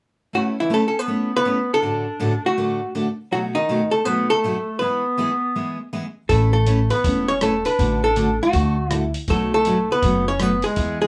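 A brisk, playful slice of country western swing opens at 0.3 seconds with a dark, clean archtop guitar carrying the melody up front, its hollow-body electric tone picked and compressed. Beside it, a full-bodied dreadnought acoustic guitar, also picked and placed up front, lays down the accompaniment, while a clear clarinet arrives just after with a distant, roomy second line full of vibrato and scooped, jazz-style notes. The tempo sits at 161 BPM in A major with a relaxed swing on the eighth notes, moving through chords such as Aadd9, D/A, B7 and E for a down-home feel. At 6.3 seconds the band thickens as a woody pizzicato upright bass enters alongside a gritty, sampler-style kit of hi-hat, thumpy kick and rim click, given an overdriven edge. The players sound as if gathered live in one room, wrapped in a short, wet studio ambience, and the passage is cut from a longer piece.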